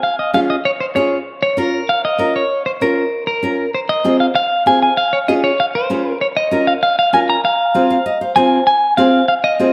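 A clean, twangy electric guitar opens this passionate, driving Latin excerpt in F minor at 194 BPM, carrying the melody up front with spring reverb and slapback echo, while a fingerpicked classical nylon-string guitar joins at 0.3 seconds to accompany over a Db, Bb minor and F minor progression, adds a fill from 7.8 to 8.7 seconds leading into a new section, and both sit in a moderate studio room.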